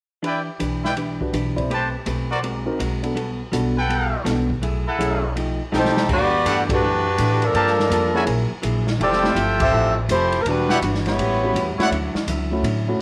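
A warm saxophone section with vibrato sits up front from 5.8 s, carrying the melody with a slapback echo, while a brilliant trumpet section punches out stabs through the same echo in this swinging, sultry big band jazz passage cut from a longer piece. Beneath them, a dark, clean, picked hollow-body electric guitar and a warm grand piano comp, a woody pizzicato upright bass anchors the low end, and a smooth, rolled-off drum kit with a boomy kick swings along, adding a fill before the band hits accents at 6.6 and 9.5 seconds. A moderate spring reverb and small room ambience give the ensemble an intimate, vintage feel.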